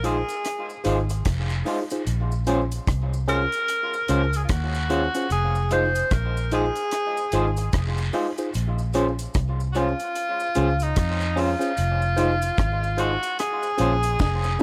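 A small room ambience frames this smooth, bittersweet lovers rock reggae excerpt at 74 BPM in Bb minor, moving between Fm7 and Bbm9 as a clear, roomy tenor saxophone with light vibrato and tape echo carries the melody over a worn, slightly out-of-tune tine electric piano, lo-fi, slightly broken-up guitar stabs through a small old amp with tape echo, a round, punchy foam-muted bass up front, a dark, dry reggae kit with a high-tuned snare and tight kick that adds a fill at 14.2 seconds, and faint, distant cabasa and guiro with echo.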